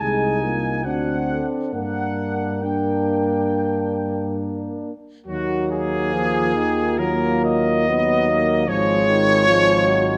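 Classical brass band music with a hymn-like, melancholic and yearning character, taken from a longer piece and moving with a free, rubato 4/4 pulse. A mellow trumpet section carries the melody up front, tight and soft in attack with light vibrato and a smooth top, while the French horn section sits in the background with a gentle second line in the same classical style. Beneath them, a bright, tight trombone section and a warm solo euphonium, sung with vibrato, fill out the accompaniment, and a dark tuba anchors the bass with a soft attack. Every part plays throughout the 10.2 seconds, and the harmony darkens as a new section arrives at 5.3 s. A moderate scoring stage reverb gives the ensemble a spacious, resonant blend.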